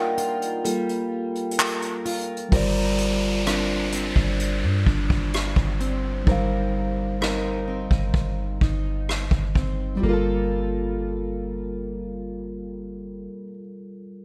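A vintage brush drum kit sits up front in this late-night, moody slice of contemporary R&B, its punchy kick, hi-hat, rim click and handclaps carrying a rolled-off top and a gated reverb. The piece opens on a break led by a mellow, clean tine electric piano solo, with a fingerpicked plugged-in steel-string acoustic guitar spinning full-bodied jumbo arpeggios through lush chorus and delay. At 2.5 seconds a soft 808-style bass enters, deep, round and sine-like with a fast attack and dark decay, alongside an electronic downlifter. The drums drop out at 9.8 seconds, leaving the electric piano, guitar and bass to settle onto a closing Gm9 as the harmony moves through rich extended chords. A moderate, lush hall reverb and bright 1980s-style digital production give the whole a polished, nocturnal glow.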